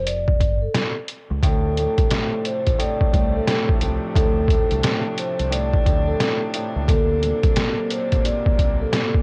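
A loping 4/4 groove with a 16th-note swing drives this dark, moody boom-bap hip-hop excerpt, cut from a longer piece. The sampler-style drum kit sits up front, compressed and pitched down with a gritty 12-bit character, pairing a thumpy kick and a medium-tuned snare with hi-hat. A deep, round fingered electric bass, played direct and amped, anchors the low end. Above it, a vibraphone with soft mallets and the motor off carries the melody in a mellow, ringing, metallic tone. After an opening break over a G7 chord, a woody upright piano with a cassette-worn vintage tint and a rich chamber string section with light vibrato enter at 1.4 seconds, moving through Dm7 and then D7b13 at 6.9 seconds. The whole take sits in a small room ambience, carrying the hazy feel of a home cassette recording.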